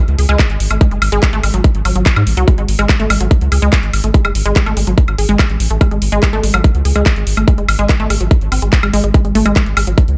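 An alien, intense psychedelic trance excerpt at 144 BPM in straight 4/4, driven by a tight, up-front electronic kick and a round, deep analog bass with a dark sine-like tone, while a garage drum kit adds layered handclaps, hi-hat and woodblock and a lush, detuned sawtooth unison pluck riff pumps to the sidechain and trails dub echo, all set in a digital ambience.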